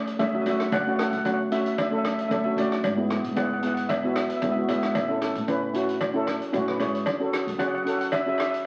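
A lightly swung sixteenth-note feel at 113 BPM in 4/4 drives this brief calypso cut, which sits in F# minor with a cool, moody air. A double-seconds steel pan played with hard rubber sticks carries the melody in a bright, shimmering upper register, while a cello-pan steel pan, struck with soft rubber sticks, sits up front with a mellow, soft accompaniment beneath it. An upright bass plucked on steel strings gives a woody, growly, thumpy low end, and a vintage drum kit with a punchy kick and rolled-off top keeps hi-hat, kick and rim clicks going from 0.1 seconds. A small-room cowbell adds a metallic ring from 0.2 seconds. The harmony moves from F#m7 through E7/G# and Amaj7 back to F#m7, and the whole passage is bathed in a wet studio reverb and the crackle of a very old 78 rpm record.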